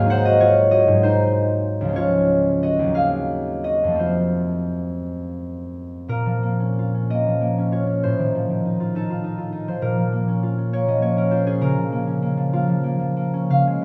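A rubato 6/8 lilt at 56-68 BPM carries this wistful, mysterious classical excerpt in Bb minor, where a solo concert harp, thumb-plucked, ringing and up front across Db2 to Bb5, drifts from Ab7 through Cdim/Eb and F before a second passage opens on Bb minor at 6.1 seconds, its tones held in a moderate recital hall reverb.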